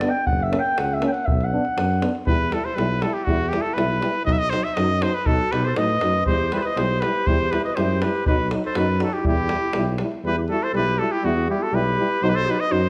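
A mellow, distant clarinet opens this bittersweet, fiery Balkan brass band excerpt in E harmonic minor at 120 BPM in 2/4, over a roomy tuba bass, a tight davul and two euphoniums in the background, one vintage-toned and one punchy and close-miked. A clear trumpet with light vibrato and a soft attack then takes the melody up front at 2.3 seconds, the clarinet returns as a second line at 5.3 seconds, and the davul drops out at 10.2 seconds, all set in a moderate recital-hall reverb.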